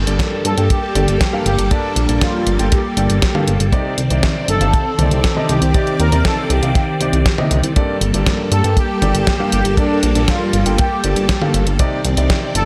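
Italo disco at 119 BPM in G minor, this danceable, melodramatic passage cut from a longer piece moves steadily in a straight 4/4 over chords of Gmadd9 and Cmadd9. A chorused synth bass sits up front, glossy and mellow, mixing pulse-wave, sawtooth and sine tones with a filter sweep and a touch of tube saturation. Around it, a phased string machine holds sustained chords with a swirling, bright shimmer from its ensemble chorus, while a concert grand piano adds stabs with audible action noise, deep bass and a tape echo. A clean 12-bit drum machine supplies hi-hat, a fat snare and toms treated with gated reverb, joined by a dry, tight acoustic kick with a rolled-off top. From 0.5 seconds an analog synth brass carries the melody between D4 and Bb4, nasal and detuned, with vibrato, chorus and tape echo, all settled in light studio ambience.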